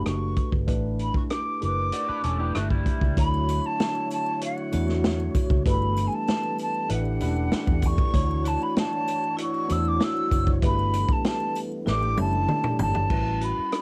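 A breathy, hollow jazz flute carries the melody over a foam-muted, round fingered bass, punchy vintage drums, a worn, slightly out-of-tune tine electric piano with phaser, and a ringing vibraphone in this lush, romantic 1970s-style soul excerpt, where a twangy, slightly broken-up guitar riff appears at 1.9 seconds before a slow-rotary tonewheel organ and a shimmering triangle join at 3.2 seconds, with a drum fill at 11.9 seconds, all with the soft grain of a home cassette recording.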